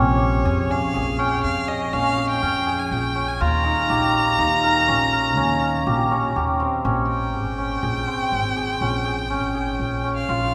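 A contemporary chamber piece in an uneven 7/4 meter opens with all three players at once: a hammered, shimmering cimbalom rolling out arpeggios, a pizzicato upright bass with a woody, steel-strung bite, and a single bowed violin carrying the melody with focused vibrato. The mood is hypnotic yet restless, moving at 122 BPM with a straight feel and tuned slightly low to A4 = 438 Hz. The cimbalom sits most prominently in the balance, its ringing tone glowing through the middle register, while the violin sings above it in a rich upper line and the bass anchors the low end. The harmony moves from Bbm7 to Eb7, then settles onto a Db5 chord as a second section begins at 6.8 seconds. All three parts sound up front, yet a deep cathedral reverb from a church or concert hall space lets each note hang in the air, and the passage is cut from a longer piece, ending at 10.5 seconds.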